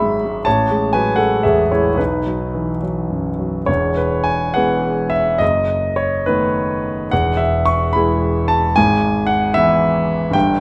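A polished concert grand piano sits up front in this short section of a romantic classical character piece for solo piano, its intimate tone carrying deep bass, long sustain and audible action noise across a range from E1 to C#6. The mood is brooding and passionate, moving in a rubato 6/8 at roughly 66-87 BPM in E major, tuned to A4 = 441 Hz. An opening passage passes from Amaj7 to B before a second section begins at 3.7 seconds, settling on E and moving through B7/F# to E/G#, all within a moderate recital hall reverb.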